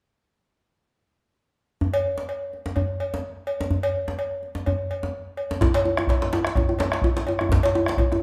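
Set in the roomy, reverberant ambience of a live band playing together, this festive, earthy West African drum ensemble excerpt at 126 BPM in a lightly swung 4/4 opens at 1.8 seconds with a deep, hard-handed djembe, joined a moment later by a metallic, dry, up-front cowbell. Then at 5.6 seconds a dark bombo and a second, medium-tuned djembe with a vintage, band-limited edge join in.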